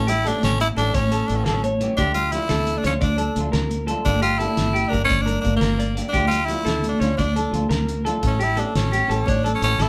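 Highlife guitar band groove in 12/8 at 115 BPM in D harmonic minor, danceable and warm, cut from a longer piece, with a raspy, close-miked tenor saxophone singing the scooped, vibrato-laden melody up front over a bright, twangy guitar picking arpeggios, a compressed guitar at the edge of break-up comping in the background, a round, foam-muted fingered bass, high-tuned congas sitting distant, and a cloth-damped, thuddy drum kit with a fat snare that plays a fill at 5.6 seconds, all cycling through A7, Dm and Gm in a small room.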